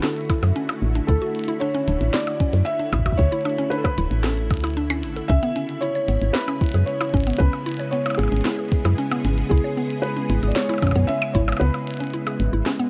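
Wistful and playful, this IDM fragment at 114 BPM sets a felt-muted upright piano melody with audible action noise and delay over silky string-machine chords with vintage sampler grit and sidechain pumping, round mallet-like plucked arpeggios, a woody FM bass up front, a soft electronic kick that drops out at 11.5 seconds for a break, and a glitchy kit of clicky hats, tiny snare and percussion blips, all moving from Dmaj9 to C#m7 under light reverb and the warbly pitch drift of worn cassette tape.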